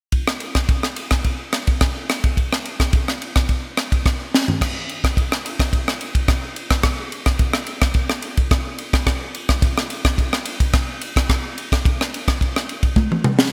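A bright, 1980s-style digital production with light reverb frames this driving, funky jazz excerpt at 108 BPM in a straight 4/4. A tight funk drum kit plays throughout, dry and up front under a gated reverb, with a high-pitched snare, a taut kick, rim clicks, toms, and sparkling crash and ride cymbals. Drum fills arrive at 4.3 seconds and again at 13.0 seconds to close the cut.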